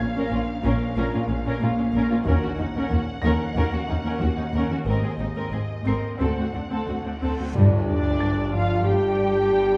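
A mysterious, eerie suspense cue for film opens on muted, con sordino string sections: violins carry a veiled melody and a more distant second line, violas add accompaniment with light vibrato, and cellos play a lush background riff over a cello bass line and close, bowed double basses. Beneath them sits a tense, string-like drone, very quiet and bright, with a sawtooth edge and its own reverb, while a dark, mellow grand piano adds faint high texture. A French horn section enters at 1.0 seconds with sustained background chords in a classical style. A cymbal swell and tam-tam join at 4.9 seconds, and the harmony moves through minor and seventh chords. At 7.5 seconds a huge reverse cymbal and sub drop lead into a band accent and impact, as a distant, roomy trombone section adds tight sustained chords with a soft attack, all held in a stone room reverb with a dark, warm production.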